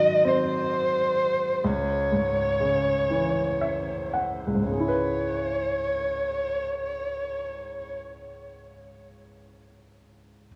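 A worn, warbling cassette sound with drifting pitch and light studio reverb wraps this dramatic, aching pop fragment in 6/8, cut from a longer piece and moving at a slow 37-44 BPM in C# minor, with a slowing in its opening seconds. Up front, a single dark, woody violin is bowed with vibrato and a smooth top, carrying the melody through a tape echo until 8.0 seconds. A clear, polished baby grand piano accompanies over G#7, C#m and C#m7 chords, adds a fill from 3.1 seconds and plays on alone to 10.5 seconds.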